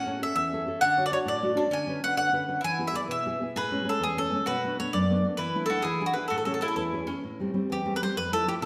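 This Italian folk serenade is a passionate, romantic excerpt in 6/8, played with a free, rubato feel. A picked mandolin carries the melody up front, its doubled strings giving a warm, woody voice. Beneath it, a quieter bowl-back mandolin adds a second line with its own warm, double-strung tone until 7.2 s. A fingerpicked nylon-string guitar, also close and present, supplies the accompaniment with a deep classical body, a warm tone, fresh strings and the occasional finger squeak. The harmony moves through lush major-seventh and suspended colours before turning darker from 7.2 s onward, shifting to Am7 and Fmaj7. The group sits in a reverberant recital-hall space that lends the sound a romantic glow.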